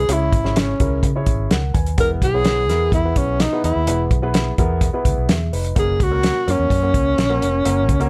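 A breathy, intimate tenor saxophone carries the melody with vibrato and scooped notes up front in this short, joyful fragment of uptempo 1960s-style soul, backed by a round, foam-muted electric bass, a woody, mellow upright piano, and a tight soul drum kit with a fat snare and pumping room sound, all moving from C#m to E to F# in a small room.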